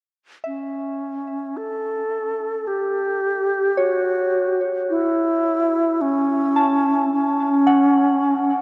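A soft FM synth bell with chorus and tape echo enters at 0.4 s playing gentle, decaying arpeggios, joined at 0.5 s by an up-front, reedy alto flute with vibrato and its own tape echo carrying the melody, both fading in through this peaceful, weightless ambient excerpt in A mixolydian at a slow 54 BPM, set in a dark production bathed in a vast cathedral reverb.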